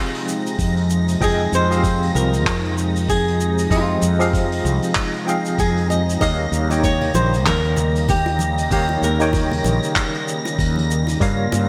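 A bright 1980s-style digital production bathed in a lush hall reverb gives this short, smooth sunset chillout cut from a longer piece a glossy sheen at 96 BPM with a gentle sixteenth-note swing, moving from Fm7 to Eb7. A fingerpicked flamenco guitar with fresh strings carries the melody through a digital delay until 10.2 seconds, over a worn, slightly out-of-tune tine electric piano with medium tremolo and delay, a thick, detuned unison pad with chorus and phaser, and a breathy, wind-like tuned noise texture. A distant brush kit of handclaps, hi-hat and shaker sits in a gated reverb; a round, dark fretless bass, up front, and a knocking, tape-warm electronic kick join at 0.6 seconds, and bongos and congas enter quietly in the background at 6.7 seconds.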